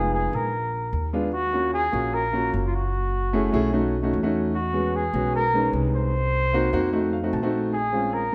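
Afro-Cuban jazz at 150 BPM in a straight 4/4, lively and sophisticated, with a dark, roomy solo trumpet carrying the melody with light vibrato, a warm, natural baby grand piano comping through rich changes from Fm7b5 and Bb7b9 to Ebm9 and a brief fill at 6.9 seconds, and a woody, thumpy pizzicato upright bass on gut strings, all set in a large studio reverb that lends this short cut from a longer piece a soft-edged glow.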